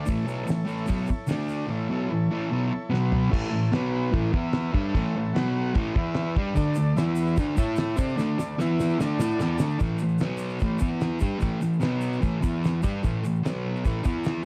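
A straight 4/4 at 148 BPM in A mixolydian powers this rowdy, raw garage rock excerpt, cut from a longer piece, where a double-tracked fuzz guitar sits up front with a compressed, distorted riff over chord moves through A, D, E, B and G. A cloth-damped kit thuds along with a fat snare, tight kick and dark cymbals, adding fills at 2.9 and 8.2 seconds, while a buzzy vintage combo organ holds clean chords with light vibrato and plays a fill before dropping out at 9.8 seconds. A grainy egg shaker sits distant in the background, and the whole take carries the character of cassette tape in a small room.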